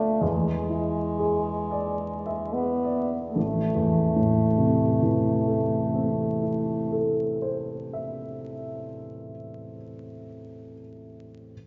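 Romantic classical music for French horn and grand piano, solemn and elegiac in mood, taken from a longer piece and moving with a free, rubato feel that slows over the opening 3.3 seconds as an E7 chord resolves to A minor. The up-front solo horn sings the melody in a low, narrow register with a warm, vintage tone and light vibrato until 7.1 seconds, while the open-sounding baby grand accompanies with long sustain, ringing on alone until 11.5 seconds. Both are heard from further back in a reverberant recital hall, with vinyl crackle and a dulled, soft top end.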